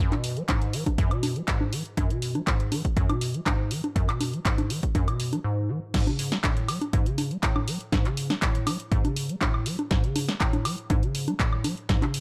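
A straight 4/4 pulse at 121 BPM drives this gritty, hypnotic acid house excerpt, where a punchy, tape-toned electronic kick and an analog drum machine of congas, crash cymbal, handclaps, hi-hat, snare and woodblock, its snare, clap and hats set in a short room, sit up front beside a rubbery, dark square-wave acid bass riff whose resonant filter sweep, tube saturation, analog chorus and digital delay carry it through a brief break at 5.4 seconds into the drop at 5.9 seconds, within a dry, close mix.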